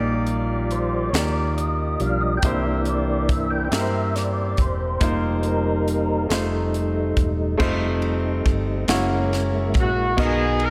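Moderate concert hall reverb wraps this slow gospel passage in 6/8, cut from a longer piece, and gives it a soulful, jubilant glow. A woody upright piano and a mellow tonewheel organ share the chords from the start, the organ turning through a slow rotary speaker with chorus vibrato as it carries a solo across both sections. Beneath them, a round hollow-body electric bass sits up front. A crisp fusion kit enters at 0.3 seconds with dark cymbals, a high-tuned snare and a punchy kick, using crash, ride and hi-hat. A very quiet vintage French horn section holds sustained chords until 10.2 seconds, and at 9.8 seconds a clear, tight horn section with light vibrato arrives with a brief melody as the harmony moves from Ebmaj7/Bb through C7, F7 and Gb7 to a closing Bmaj7.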